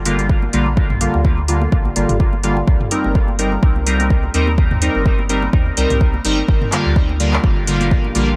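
A dry, close-sounding stretch of meditative, nocturnal dub techno, cut from a longer piece, where an up-front, overdriven electronic kick drives a soft vintage rhythm box of handclaps and metallic hats, with layered electronic congas and toms set in the background under dub echo. A round, soft sub bass pumps against the kick while a juicy, warbling polysynth, detuned and bright with chorus, phaser and a resonant filter sweep, throws stabs into dub echo over a Gm7 to Cm7 progression. At 7.4 seconds a deep, moody ambient pad with a slow attack and chorus enters quietly behind everything else.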